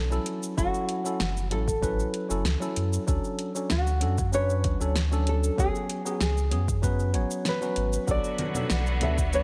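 A straight 4/4 groove at 96 BPM opens this wistful, smooth sunset chillout excerpt in F# minor, carried by a round, up-front sine sub bass, an electronic R&B kit with a fat snare, metallic hats and shaker, and a deep, overdriven electronic kick that joins at 0.6 seconds. Over chords moving from F#m7 through Dmaj7 and C#7sus4 to Bm7, a thumb-plucked classical nylon-string guitar sings the melody and a clean tine electric piano comps through a combo amp, both touched with tape echo. At 8.1 seconds a rich, bowed string section adds sustained chords with vibrato, joined briefly by distant, ringing congas under soft hands, all within a light reverb.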